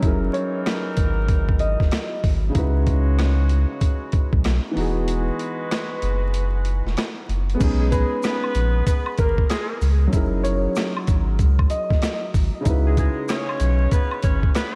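Swung sixteenths at 95 BPM drive this soulful, dreamy boom-bap hip-hop in B major, where a gritty, pitched-down sampler drum kit with a thumpy kick and high-tuned snare sits up front beside a round sine sub bass, a mellow concert grand with audible action noise and cassette-tape colour comps underneath, a tight vintage saxophone section adds stabs through diffuse delay, a woody upright piano carries brief melody lines from 0.3 and 7.9 seconds, and maracas and woodblock join in the background at 7.6 seconds, the mix soaked in lush hall reverb and vinyl crackle.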